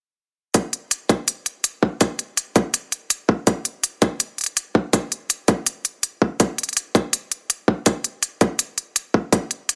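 Half-time drum and bass with a heavy, dark mood and a swung feel, this short cut from a longer piece features only an up-front electronic kick drum, layered and tight with a small-room character, and crisp, produced electronic hi-hats, both touched with studio reverb and running from 0.5 seconds, the kick stopping at 9.4 seconds and the hats at 9.8 seconds, in an otherwise dry mix.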